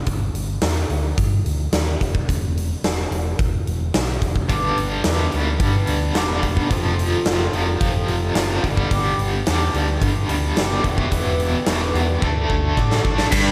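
A straight 4/4 pulse at 109 BPM drives this sunny, confident classic rock passage in G major, cut from a longer piece. From the start, a huge arena drum kit sits up front, with a punchy kick, medium-tuned snare, hi-hat and crash cymbal, while an overdriven fingered electric bass adds a dark, round weight beneath the G5 and E5 power chords. At 4.5 seconds, a bright, picked overdriven electric guitar riff arrives with tremolo and slapback echo, alongside a boxy, shimmering, octave-doubled twelve-string acoustic guitar that carries the G, F, Em7 and D changes with a swing feel and slapback echo of its own. A drum fill starting at 12.2 seconds leads to a brief burst at 13.3 seconds, where a double-tracked, compressed distorted electric guitar, a tight distorted guitar and a jingly tambourine in the background all join. A lush hall reverb gives the whole a big arena sound.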